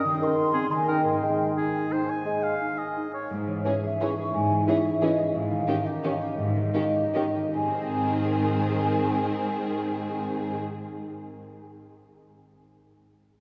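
Festive and sweeping, this orchestral ballroom waltz in Ab major moves in 3/4 with a rubato feel between 146 and 201 BPM, slowing down from 4.8 to 7.5 seconds, and is cut from a longer piece. A ringing concert harp plays arpeggios throughout, and an airy, hollow small flute group sounds alongside it from the start, while a dark solo clarinet in the background, a warm oboe and a mellow bassoon fill the opening bars before the strings take over at 3.3 seconds. There a lush violin section carries the expressive melody over a clear, distant second violin line, a focused, close viola accompaniment and a cello bass with soft attack and portamento, all bathed in cathedral reverb.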